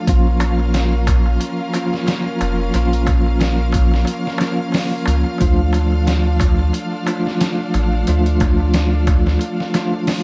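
A swung sixteenth-note groove in 4/4 drives this brooding, cinematic trip hop excerpt: a pitched-down, compressed sampler-style drum kit with a thumpy kick, medium-tuned snare and hi-hat carries vintage 12-bit grit, while a clay-shell darbuka sits in the background. Up front, a round, deep dub sub bass anchors the harmony as a bell-like tine electric piano plays accompaniment with tremolo, sampler grit and tape echo, and a soft-attack string section holds intimate, sul tasto chords with vibrato. The harmony shifts from Bbm to Dm at 5.4 seconds, and the dry mix is coated in vinyl crackle with its highs rolled off.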